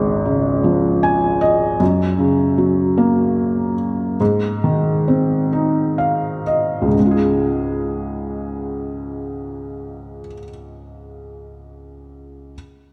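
Romantic and heartfelt, this slow pop excerpt in 6/8 moves at 39-52 BPM in dotted quarters in D-flat major, where a soft, mellow, intimate felt-muted upright piano sits up front with a thin, vintage felt tone, playing accompaniment across Db, Gb and Ab chords before returning to Db, adding fills at 0.6 and 5.5 seconds and slowing down from 1.8 seconds, all wrapped in a dark production with a wet concert hall reverb.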